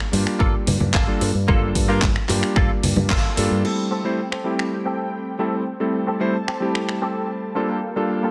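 Nu-disco with a groovy, sleek feel, this short excerpt is cut from a longer piece and opens on a Gm9 chord. A bright, twangy clean electric guitar plays a picked riff through ensemble chorus, a low-pass filter and dub echo, while an up-front electric grand piano with a clangy low end carries the accompaniment, pumping with sidechain compression and its own dub echo. A fingered electric bass with an envelope filter, conga percussion sitting close and dry in the background, and a punchy electronic kick fill out the opening groove. The pop drum kit adds metallic hi-hats, finger snaps, handclaps and a crash cymbal, and a band accent lands at 3.1 seconds just before the bass drops away at 3.6 seconds. From there a thick, detuned sawtooth pad with a slow attack drifts in behind the guitar and piano, its sustained chords shimmering with chorus, phaser and sidechain pumping.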